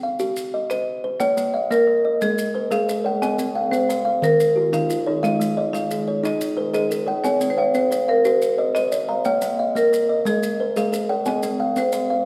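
A steady 12/8 interlocking cycle in the southern African mbira tradition drives this hypnotic, warm fragment of a longer piece, where a woody, up-front kalimba plucks short, soft arpeggios from the start, a second mellow kalimba with a ringing tone joins at 1.4 seconds, grainy maracas add gentle percussion, and a boxy, percussive marimba struck with hard mallets carries the melody up front, all set in a moderate recital-hall reverb over a cycle of Cm, Bbm, Ab and Eb chords.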